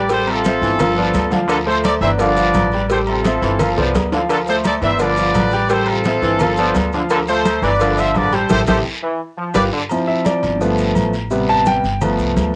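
Driven by a straight 4/4 salsa groove at 171 BPM, this joyful, sunny excerpt of a longer piece sets thick-skinned, damped congas up close beside high-tuned cowbell and bongos, a raspy guiro, grainy maracas, ringing agogo bells and timbales, and a woody, thumpy pizzicato upright bass, all cycling over Am7, G7 and Dm7 chords. A punchy, up-front trumpet section carries the melody over a brilliant trombone section's second line with vibrato, while a clear concert grand piano with audible action noise and long sustain supplies accompaniment, and drum fills and a band accent lead into the trumpets and trombones stopping near 9.8 seconds. From 9.9 seconds the piano takes a solo, with the home cassette recording and light reverb framing the whole band.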